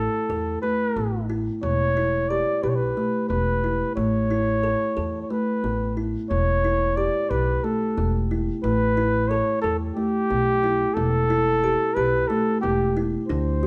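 A light reverb frames this short cut from a longer contemporary chamber piece, urgent yet hypnotic, moving in a straight 7/8 at 180 BPM in eighths in E dorian. An up-front flugelhorn carries the jazz-style solo melody with soft attacks, scooped notes and a smooth top, over ringing, airy kalimba arpeggios with a hollow box tone and fingertip plucks. Beneath them, a pizzicato upright bass with steel strings sits forward, dark and growly, as the harmony moves between Asus2, Em and Aadd9.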